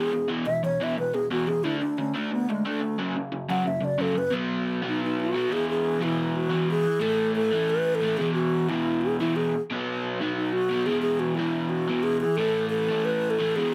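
A crunchy, bright, double-tracked electric guitar drives this energetic, rowdy punk excerpt at 179 BPM in a straight 4/4, while a breathy, hollow alto flute carries the melody with a crisp attack, taking a solo over the opening 4.3 seconds before the music settles into E major, all set in a moderate studio reverb with a heavily compressed, radio-like sound.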